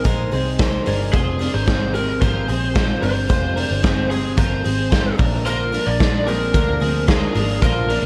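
Youthful and breezy, this jangly indie pop passage rides a straight 4/4 groove over Abadd9, Fmadd9 and Bb chords. A picked twelve-string acoustic guitar gives full-bodied, shimmering, octave-doubled accompaniment, while a clean, twangy twelve-string electric guitar plays compressed arpeggios colored by harmonic tremolo. Sitting up front, a raw garage drum kit of hi-hat, punchy kick and medium-tuned snare sounds smooth and rolled-off in a bright stone room, roughened by vintage 12-bit sampler grit. A vintage muted electric bass, foam-muted and round, joins at 0.1 seconds, and at 1.1 seconds a dark lead guitar pushed through a small cranked amp brings an overdriven melody. Light reverb and a cassette-tape sheen tie the mix together.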